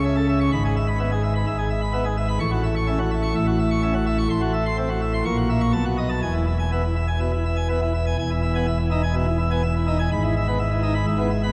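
Classical organ toccata, jubilant and majestic, moving at 125 BPM in a straight 4/4 in E major: a solo pipe organ on full plenum with bright mixtures, baroque voicing and audible chiff sits up front across a span from E1 to C#6, its harmony passing through F#m7b5/A and B7 to settle on E around 6.2 seconds, all bathed in a reverberant church acoustic with a dark production and vinyl crackle in this brief cut from a longer piece.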